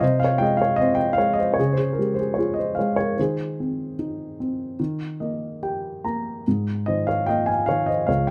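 A dark baby grand piano opens this short excerpt alone, playing a lyrical classical piece in A-flat major at a calm, unhurried 75 BPM in 4/4, its time stretched and relaxed with rubato. The mellow, intimate tone sits up front, with audible action noise and a short sustain that keep the sound natural and close. The harmony moves gently through Ab/C, Db, Ab/Eb and Eb before settling on an Absus2 at 6.5 seconds, spanning a register from Db2 up to Bb5. A brief piano fill between 4.8 and 6.5 seconds leads into that final open chord. Moderate studio reverb and a dusky production give the 8.3-second passage a warm, peaceful glow.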